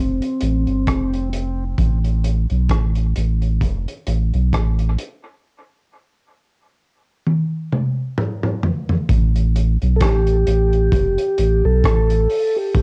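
Hypnotic and deep, this 66 BPM dub reggae fragment with a swung 16th feel rests on a round, sine-like sub bass warmed by tube saturation, under a dark, saturated breakbeat kit of hi-hat, tight kick, rim click and toms with a rolled-off top and cassette-tape crunch, which plays a drum fill at 7.3 seconds. Meanwhile, a soft, flute-like tonewheel organ with key click, slow rotary speaker, low-pass filter, dub echo and plate reverb sounds briefly at the start and returns at 10.0 seconds over Gsus2/A before the harmony falls back to F, all captured as a dry, intimate home cassette recording.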